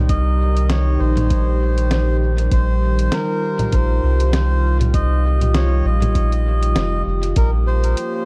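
Hazy and meditative, this short ambient dub fragment, cut from a longer piece, moves in a swung 4/4 with a sixteenth-note lilt and is tuned to A4 = 435 Hz. A deep, round sub bass sits up front, its soft, fast-attack square and triangle tone holding sustained low notes beneath a warm, detuned sawtooth pad, whose smooth, full-bodied chords carry chorus, a soft attack and a long release. A reedy, breathy melodica carries the melody with a nasal, mellow voice in a boxy small-room sound, trailed by dub echo. Underneath, a compressed, pitched-down electronic kick thumps in the background, while a muffled lo-fi sampler-style kit of congas, hi-hat and a medium-tuned snare adds its own dub echo. Light reverb sits over the mix, and the harmony shifts from Cm/Bb to Bbm69 at 7.4 seconds.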